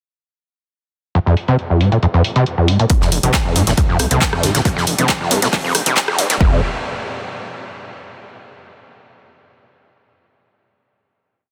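A squelchy, distorted acid bass line with accents and slides leads this hypnotic, industrial peak-time techno piece in F minor at 137 BPM, joined from the start by up-front programmed claps, rim clicks and low-passed, pumping hats, until at 2.9 seconds a build-up sweeps the acid line's filter as a heavy four-on-the-floor electronic kick and a very quiet, dry looped 70s breakbeat of hi-hat and fat snare come in, followed at 3.1 seconds by a gritty sawtooth synth bass galloping in sixteenths, the two basses pumping against the beat under a dense, heavily limited master and a huge ambient reverb before the parts drop out around 6.4 seconds.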